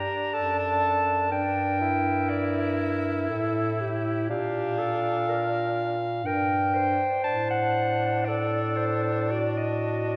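Solemn and yearning, this lyrical classical excerpt for single-reed quartet moves in a rubato three-four as a punchy, up-front clarinet carries the melody over a clear second clarinet, a distant tenor saxophone with vibrato, and a smooth-topped bass clarinet, all set in a wet concert hall reverb.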